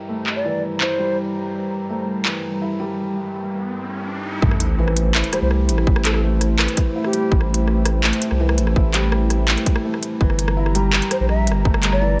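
A hard-clipped electronic kick drum and a thick, saturated sine sub bass hit at the drop at 4.4 seconds in this dark, cinematic half-time drum and bass excerpt, joining a crisp, overdriven industrial kit of handclaps, hi-hat and rim click, a moody detuned analog pad with chorus and sidechain pumping, soft felt-muted upright piano arpeggios with audible action noise and dub echo, a hollow, airy jazz flute melody with vibrato and chiff, and a riser and sub drop sweeping from 3.2 to 5.9 seconds.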